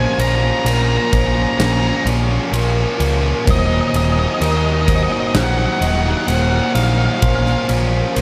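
A growling, overdriven electric bass sits up front in this melancholic, cinematic post-rock excerpt at 64 BPM in Eb dorian. It is joined by a brilliant, double-tracked fuzz guitar riff, a dark octave-fuzz lead melody with analog delay that stops at 7.7 seconds, ringing vibraphone arpeggios with delay, very quiet bowed strings with light vibrato holding chords, and a huge arena drum kit with punchy kick and brilliant cymbals entering at 0.2 seconds, all moving over Bbm7 and Ebm in light reverb.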